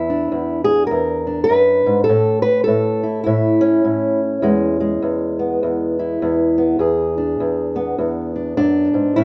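Acoustic country blues in a soulful, rollicking mood, moving at 102 BPM in 4/4 with a swung eighth-note feel in E mixolydian. A single fingerpicked, ladder-braced acoustic guitar carries the whole 9.2-second cut, heard up front with a woody, boxy tone and the dark character of old strings. Its range runs from E2 up to B4. The harmony moves from E7 to A at 2.1 seconds and back to E7 at 4.4 seconds. Light reverb and a dark, warm production surround the solo guitar, and the clip is drawn from a longer piece.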